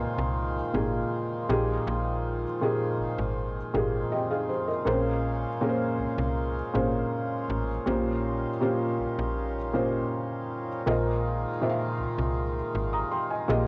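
A felt-muted upright piano, a reedy hand-pumped harmonium and a snappy, slap-like FM bass open together on an Ab6/9 chord in this late-night, sensual R&B excerpt at 80 BPM in 4/4. The mellow, intimate piano sits up front with audible action noise and short sustain, carrying the accompaniment and adding a fill from 3.7 to 4.9 seconds, while the breathing, nasal harmonium holds dark sustained chords and the bass gives a fast, metallic, digital attack that then decays. The chords move through Fm7, Bbm9 and Eb13/Bb to Ab6/9 over Bb, with the piano and harmonium carrying a cassette-tape character inside light reverb and a small home-room ambience.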